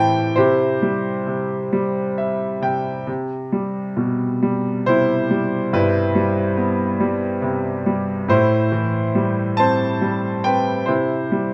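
A slow 6/8 pulse at 44-48 BPM, played with free rubato, carries this tender, calm excerpt of lyrical classical solo piano in C major, where a clear, smooth grand piano with a vintage tone and long sustain sits up front in light reverb, ranging from G2 to A5, adding a brief fill from 1.7 to 3.1 seconds and moving through Cmaj7 and Am7 before settling back on C at 10.9 seconds.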